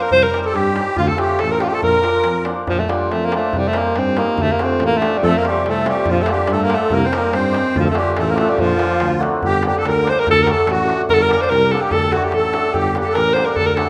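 A straight 2/4 pulse at 143 BPM drives this fragment of a Balkan wedding band tune, and the tempo gathers speed from start to finish, giving it a restless, fiery energy. The alto saxophone carries the melody up front with vibrato, a soft attack and a smooth, classically shaded tone. Beneath it, a reedy musette accordion with shimmering, wet tuning plays a second line, dropping out at 2.4 seconds and returning at 5.2 seconds. A ringing hammered dulcimer supplies the accompaniment, a dark tuba holds the bass with light vibrato, and a deep, compressed clay-shell darbuka played with soft hands keeps the percussion going. The music opens in Bb major and turns to G harmonic minor at 9.4 seconds, moving between Gm and D chords, all set in a wet recital hall reverb.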